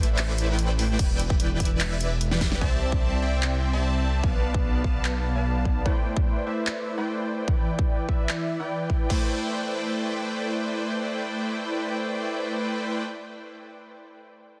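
Future bass in A minor at 148 BPM with a half-time feel, this lush, dreamy excerpt opens on a drop where a big, bright, wave-folded polysynth riff with chorus, 12-bit sampler grit, delay and sidechain pumping rides over a thick, saturated detuned saw bass that stops at 5.8 seconds, a punchy layered kick entering at 1.0 seconds, and a big-room kit with a huge snare, handclaps, hi-hat and crash, as a drum fill leads into a filter sweep on the polysynth from 2.6 seconds and chords of Am11, Em7, C69 and Bm7b5 unfold under a dense, heavily limited master with light reverb.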